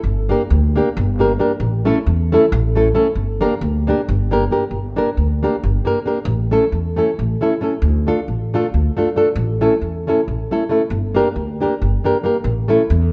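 A woody, growly pizzicato upright bass opens this restless, virtuosic Balkan wedding-band folk passage, joined at 0.3 seconds by a dark, full-bodied, thumb-plucked nylon-string guitar carrying the accompaniment, both placed up front. The music drives along in 7/8 at 271 BPM counted in eighths, with a straight feel in G Dorian sharp 4 and tuning at A4 = 444 Hz, circling between G minor and A before moving through D minor in a second section that begins at 4.7 seconds. A moderate recital-hall reverb surrounds this snippet cut from a longer piece.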